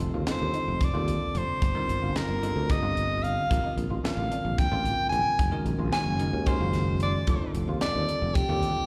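Set in a straight 7/8, this funky, bright electric jazz fusion excerpt puts an edgy, close-miked soprano saxophone solo with light vibrato, slapback and tape echo up front from 0.3 seconds, over crisp drums with a high-tuned snare and punchy kick, a growly fretless bass, a bell-like tine electric piano with slapback echo and a slightly broken-up, picked guitar adding chorused stabs in the background, moving from F13 through Ebmaj13/G, Bbmaj7 and Gb69 back to F13 in the sound of a live gig heard through the venue's PA, with recital hall reverb and faint mains hum.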